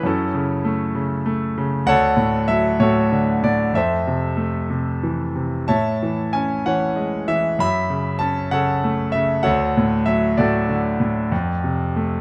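A bright concert grand piano opens alone, sitting up front with a deep bass and a natural tone, in a dark, melancholic classical piece for solo piano that moves at a lyrical, rubato 64 beats per minute in 6/8, tuned to A4 = 441 Hz. Its harmony drifts through F#m7, Dmaj7, Fmaj7 and Amaj7 before circling back and landing on F near 11.3 seconds. Close, detailed microphones and light reverb frame this 12.2-second excerpt of a longer work.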